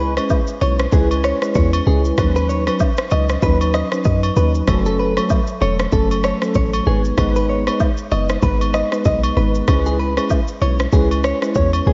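A mellow tine electric piano with analog chorus, a bright, clean, picked electric guitar riff through lush chorus and analog delay, and a round, dark log drum bass sitting up front open this hypnotic, smooth afrobeats excerpt at 96 BPM with a swung 16th-note feel. At 0.2 seconds an electronic drum kit with a deep kick, rim click and shaker joins them, plus close agogo bells and woodblock, over a C#m7, Badd9, F#m, G#m progression in a dreamy mix soaked in lush hall reverb with a softened top end.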